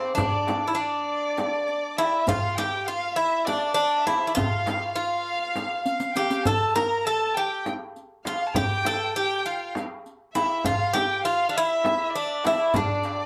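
A small, reverberant room holds this live ensemble, and the short cut from a longer Turkish makam piece carries a melancholic, longing mood in D makam nihavent. The pulse moves at 201 BPM in eighths, grouped in a straight 7/8. Up front, a bright, metallic Greek bouzouki picks the melody on its double strings, some of them octave-doubled. Above it, a dark solo violin bows an expressive second line with vibrato, portamento and a soft attack. A studio violin section bows a second line in the same register in the background, intimate and close with light vibrato and a smooth top. The percussion is a crisp metal-shell darbuka that sounds distant in a large room, a small, dry frame drum, and a riq with shadowy jingles set back in the mix, with a drum fill at 5.9 seconds.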